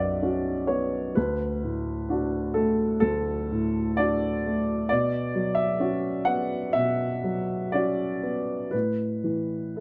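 Rubato phrasing stretches and relaxes the 4/4 pulse in this melancholic, reflective piece of neoclassical minimalist piano, a short passage lifted from a longer work. A lone baby grand piano, warm, natural and up front, plays from deep B1 bass notes to F#5 in the treble, moving through Bsus2, D, Bmadd9 and, near 8.7 seconds, Asus2. Close, detailed microphones and a nearly dry room keep every note intimate and clear.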